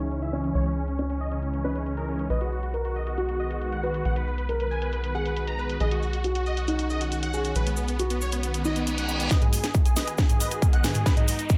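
Supersaw chords swept by a filter open this uplifting, soaring trance excerpt in B major at 137 BPM, huge and lush with a cassette-tape tint and digital delay, over a dark, boxy grand piano with tape echo, a tight, punchy sequencer bass and an overdriven techno kit with a cracking snare, the chords, bass and kit pumping to the sidechain, while a grainy cabasa joins at 2.3 seconds, a reverse cymbal and riser rise from the background at 8.6 seconds, and at 9.3 seconds a distorted, up-front electronic kick, a drum fill and a catchy, phased pluck lead drive a build-up over G#m7.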